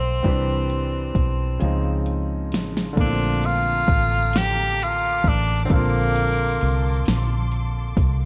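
Sensual and tender, this slow six-eight R&B excerpt sets a clear, lightly vibrato tenor saxophone melody with scooped notes, delay and plate reverb up front over a warm concert grand piano, a round, foam-muted electric bass and a soft-kicked, fat-snared electronic drum kit with gritty sampler texture and a fill at 1.6 seconds, before a dark, woody string section enters at 3.0 seconds with lush sustained chords as the harmony settles from Dbmaj9 onto Bbmaj9.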